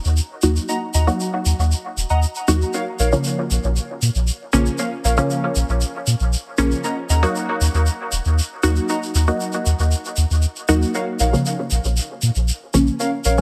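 Dub techno with a hypnotic, deep mood, moving at 117 BPM in a straight 4/4 and centred on Bb minor, in a short cut from a longer piece. A round, sine-like sub bass sits up front from the very start, sustained and mellow, alongside a grainy, close acoustic tube shaker kept low in the mix. At 0.4 seconds a muted, filtered dub chord stab enters, its detuned sawtooth tone plucked by the filter and decaying through chorus, phaser and dub echo. From 0.7 seconds warbling lo-fi synth keys add a nostalgic, wave-folded riff in a higher register, softened by chorus and trailing dub echo. The harmony rocks between Ebm and Bbm under light reverb, and the dense, heavily limited master carries a layer of vinyl crackle.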